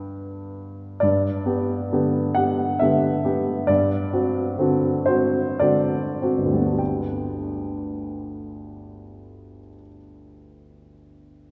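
A woody, polished upright piano sits present and up front from the first moment, playing a tender, serene romantic nocturne in G major and 3/4 at a rubato 46-70 BPM that slows through its first 6.8 seconds as the harmony moves from G to D7/G at 3.7 seconds and settles back on G, the solo line bathed in a lush church reverb lingering about 2.7 seconds in this brief portion of a longer classical piece.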